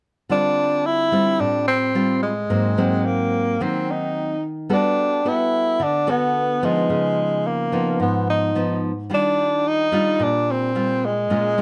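A mellow tenor saxophone and a fingerpicked nylon-string guitar begin together at 0.3 s in this melancholic, intimate bossa nova at 109 BPM, cut from a longer piece and moving through rich jazz chords from Dm11 to Ebmaj9. Up front, the saxophone carries the solo melody in a smooth jazz style, with subtone, gentle vibrato and scooped notes. The guitar is equally close, its classical accompaniment sounding warm and acoustic, and both sit in a moderate studio reverb.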